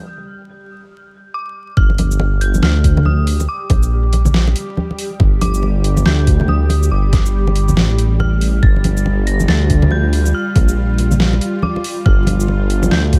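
A deep, rumbling detuned saw bass sits up front from the very start of this deep dubstep excerpt in G minor, its dark sawtooth tone beating against itself beneath a meditative, heavy mood at 140 BPM with a half-time, swung feel. Above it, an eerie, inharmonic synth bell carries the melody high in its range, its FM tone shimmering with chorus, tremolo and dub echo, while a tense, string-like bowed drone holds sustained chords with slow attack, vibrato and its own reverb. The opening 1.8 seconds form a short build-up and break, with a filter sweep on the bell, before the drop lands. At that point an overdriven, knocking electronic kick enters up front, joined moments later by close, bright congas played with hard hands and an overdriven dubstep kit of deep snare, bright hi-hats and shaker. A layer of vinyl crackle runs through the piece, lending a worn, dusty surface to the dark atmosphere.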